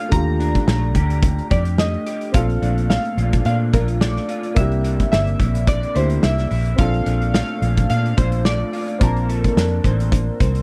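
Dry-sounding, this laid-back, sunny indie and bedroom pop clip in Bb major moves at 108 BPM with a light swing, as round analog keys carry the melody through lush chorus and slapback echo over a slightly broken-up electric guitar with warbly pitch drift, a woody, slightly detuned upright piano with audible action noise, a dark, foam-muted fingered bass and a punchy, loose drum kit with a rolled-off top, the bass and drums both sitting up front.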